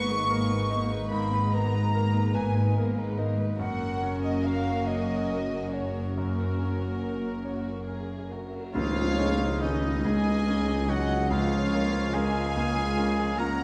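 A hushed, longing film-score cue in a rubato 6/8 opens with the full orchestral bed already sounding: a symphonic violin section carries the melody with a soft, floating sul tasto tone, shadowed by an airy, hollow small flute group and an intimate chamber violin section with light vibrato. Underneath, a brilliant concert grand piano rings with long sustain and deep bass, while woody, lush violas sit in the background and the low end is anchored by distant, dark double basses and a rich, pure cello section. A cymbal swell and tam-tam enter very quietly at 6.2 seconds, and the flutes fall away at 8.3 seconds. At 8.7 seconds the ensemble accents a new section, where a clear, classical-style solo oboe takes up a second line and, a moment later, a tight French horn section adds sustained chords from the background. The scoring-stage reverb gives the whole a moderate sense of space and a dark, warm, moving character, as this fragment of a longer piece drifts between suspended and minor-coloured harmonies.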